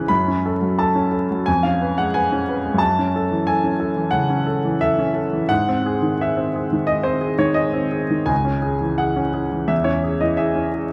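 A passionate, brooding romantic character piece for solo piano in C# minor, taken from a longer work, unfolding at 88 BPM in 4/4 with free rubato as a clear, intimate baby grand sits up front with long sustain and audible action noise, moving from F#m through G# to settle on C#m inside a moderate concert-hall reverb and a dark production touched by vinyl crackle.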